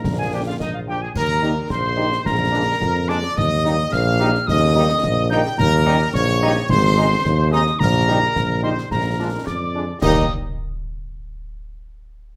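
A rousing, spirited military-style march for wind band in Eb major, moving at 108 BPM in a straight 2/4, cut from a longer piece. A clear trumpet section with light vibrato carries the melody while a pure, crisp-attacked wooden piccolo plays a second line above it, a very quiet, dark French horn section fills in the accompaniment, and the clear trombone section enters at 0.3 seconds with tight sustained chords. Underneath, a mellow, up-front tuba anchors the bass with a soft attack, concert snare, bass drum and dark-toned clash cymbals sound close and dry, and a moderate large-studio reverb surrounds the band as the harmony moves through Ab and Bb7 before landing on Eb at 10.0 seconds.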